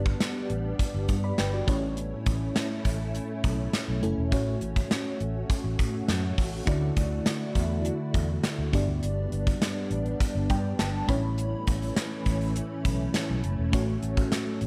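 A dry, polished mix carries this glossy, uplifting 1980s-style pop clip at 102 BPM in a straight 4/4, where bright, up-front gated drums with a tight kick and medium-tuned snare sit over a dark, round, foam-muted fingered bass, a lush, dreamy FM electric piano with a soft pad layer, chorus and tremolo plays the accompaniment and adds a fill at 10.2 seconds, and a silky, slow-attack string machine with ensemble chorus holds sustained chords through a G, A, F#m/A and Dadd9 progression.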